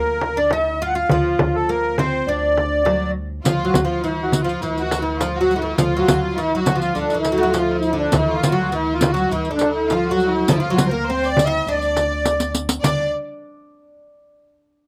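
Stately and festive, this short excerpt of an Arabic maqam ensemble piece in D maqam saba moves at 102 BPM in a straight 4/4, with a reedy, sweet accordion up front carrying the melody over a plectrum-plucked fretless oud's woody second line and a growly pizzicato upright bass holding D2, a small, bright frame drum entering at 0.2 seconds, and a clear bowed violin section with light vibrato and close, dry riq with dark jingles joining at 3.4 and 3.5 seconds, the accordion, oud and violins touched by slapback echo in a dry, roomless sound before a drum fill at 12.2 seconds leads into a new section at 12.8 seconds.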